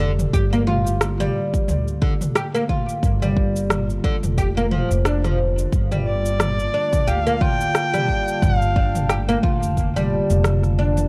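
Organic downtempo with a hypnotic, meditative pull, built on a woody, plectrum-plucked oud arpeggiating up front with tape echo over a warbling, nostalgic pad of sustained chords, a dark pizzicato upright bass, and a layered deep house kit of cabasa, rim click and toms alongside a deep electronic kick, with sidechain pumping on the pad and bass, until a clear, bowed kamancheh with vibrato and portamento slips in at 6.1 s through analog delay, the whole cut from a longer piece and set in a small room with gritty, cassette-tinged grain.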